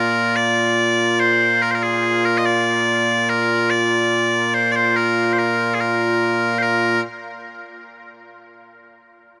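A loud, bright bagpipe opens alone, sounding piercing and continuous as it carries a piece of traditional Scottish pipe music in Bb mixolydian. The tune moves at 72 BPM in a straight 2/4, giving it a ceremonial, proud bearing. Placed up front, the pipes range from Bb2 up to Eb5 and play solo until 7.0 seconds. A huge ambient reverb, with a decay of about 7.7 seconds, lets the sound hang in a vast space. The passage shifts into a new section at 6.6 seconds, and the recording is cut from a longer piece.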